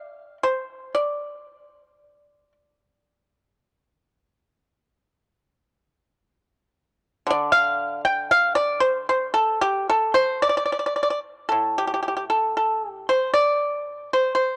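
This Chinese traditional piece for solo pipa has a longing, contemplative mood, its unhurried rubato phrasing loosely set in two. The pipa, plucked with fingerpicks, has a mellow yet dry and percussive tone, and it sits up front in the sound. It plays from the start until 2.5 seconds, falls silent, then returns at 7.3 seconds and carries on to the close at 14.6 seconds, moving into a new section along the way. The instrument ranges from A2 to G5, giving it a full register. A light reverb and the soft grain of a home cassette recording give the excerpt an intimate, worn character, as if it were lifted from a longer performance.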